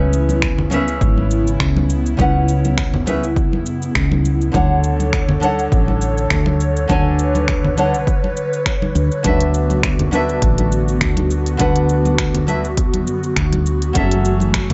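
Sunset chillout with a relaxed, wistful mood and a gentle swung groove, this passage cut from a longer piece pairs a small, fingerpicked nylon-string guitar, roughened by vintage 12-bit sampler grit and delay, with an airy, breathy pad that sustains mellow chorused chords. Beneath them, a dark, round fretless electric bass with tube saturation and analog chorus anchors the harmony. A deep house drum kit of finger snaps, smooth hi-hats and shaker enters at 0.1 seconds, background congas with a thick-skinned, compressed tone follow at 0.3 seconds, and a punchy electronic kick joins at 0.4 seconds, all set in light reverb and digital ambience.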